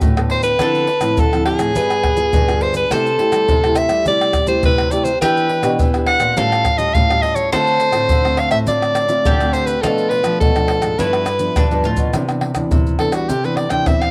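A straight 4/4 samba and choro groove at 104 BPM, lively and sunny, rides on close, up-front percussion of maracas, tight surdo, pandeiro and tamborim, while a small fingerpicked nylon-string guitar carries chords such as Gmaj9, Dm9 and G7b9, a woody, thumb-plucked nylon-string guitar with old strings holds down the deep classical bass, a bright, picked bowl-back mandolin with double strings plays a second line until 12.1 s, and an edgy soprano saxophone with vibrato and a soft attack sings the jazz-style melody from 0.3 s before stepping out for a solo after a drum fill at 11.6 s, with cassette-tape grain on the saxophone, mandolin and accompanying guitar, tape echo on the saxophone, and moderate studio reverb surrounding this home-recorded excerpt, cut from a longer piece.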